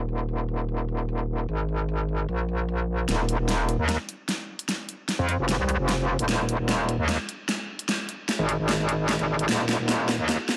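A half-time 4/4 pulse at 150 BPM drives this menacing, chaotic heavy wobble dubstep fragment, where a metallic, saturated FM wobble bass with chorus and overdrive wobbles up front while an electronic, layered drum kit with a huge overdriven snare and low-pass-filtered hi-hats builds up through a drum fill from 3.1 seconds, set in a light digital ambience.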